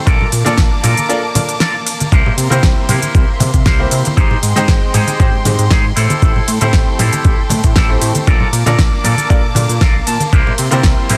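An overdriven, gritty electronic kick sits up front in this groovy, feel-good nu-disco excerpt at 117 BPM in a straight 4/4. Beneath it, a fat, detuned sawtooth bass with a filter sweep carries the low end, while a layered pop drum kit adds a fat snare, crisp hi-hats, ride cymbal and cabasa, joined by damped, low-tuned congas played with soft hands. A twangy, picked electric guitar through an envelope filter plays a riff dressed in lush chorus and dub echo, and a brilliant baby grand piano with audible action noise and its own dub echo provides accompaniment. A smooth, bowed violin section holds sustained chords with vibrato and sidechain pumping over a progression that moves through Bbmaj7, C7, Abmaj7 and Am7. A break arrives at 1.1 seconds, and a clean electric guitar fill appears at 9.6 seconds, all within light digital ambience and a dense, heavily limited modern master.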